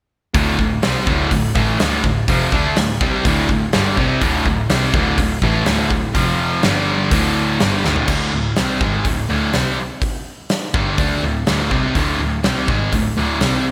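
A straight, driving 4/4 pulse anchors this anthemic, powerful hard rock fragment from a longer piece, where a punchy, up-front rock kit with gated reverb and crisp cymbals pushes riffs built on D5, F5 and G5 power chords. A scooped, high-gain guitar leads the riffing, while a dark, overdriven guitar sits behind it and a compressed, double-tracked distorted guitar plays until 8.1 s. A bowed, muted double bass adds a veiled low line with vibrato, and a drum fill at 7.8 s launches the second section, all set in a lush hall and a glossy 1980s-style digital production.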